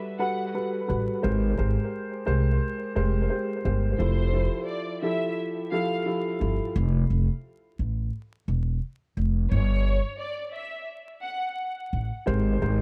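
A woody, thumpy upright bass sits up front in this confident boom-bap hip-hop passage, its pizzicato gut strings entering at 0.9 seconds and carrying through to the end. A dark, boxy grand piano with cassette-tape grain and tape echo plays accompaniment from the start until 6.7 seconds, returning briefly at 12.3 seconds. Meanwhile, a close, bowed violin section carries the expressive melody with vibrato and portamento. The swung groove moves through major-ninth and suspended chords in a small, echo-heavy room dusted with vinyl crackle, giving the piece a warm, assured feel.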